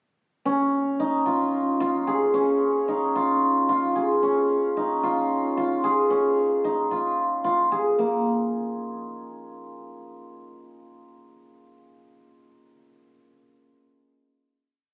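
A lone cimbalom carries this short progressive instrumental piece, its hammered strings shimmering and ringing up front in the sound. The mood is driving and intricate, set in an odd metre of seven with a straight feel, the instrument spinning an ostinato that stays between Bb3 and Ab4. It begins at 0.5 seconds on a Dbadd9 harmony and plays until 8.2 seconds, with the final note arriving at 8.0 seconds and the piece closing at 9.9 seconds. Light reverb surrounds the cimbalom. The recording was captured on a phone in the room, with studio ambience and compression, and its top end is dulled.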